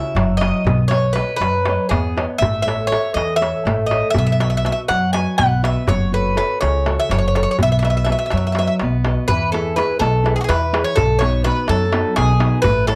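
A picked Greek bouzouki opens this sunny, warm stretch of Greek folk at once, its metallic double strings, some doubled at the octave, carrying the melody up front over a fingerpicked nylon-string guitar and a crisp, deep darbuka. An upright bass joins at 0.1 seconds, its pizzicato gut strings sounding woody and thumpy beneath the band. The music moves in 7/8 at 245 BPM counted in eighths with a straight feel, and it speeds up across its 13 seconds. The full-bodied classical guitar supplies the accompaniment through a progression that begins on F#7 and Badd9, then passes through A, B and F#m before a new section arrives at 9.3 seconds, moving between E and B. The metal-shell darbuka, played with hard hands, has a vintage, band-limited character, and a moderate small-room reverb gives the ensemble a close, intimate setting. The recording is cut from a longer piece.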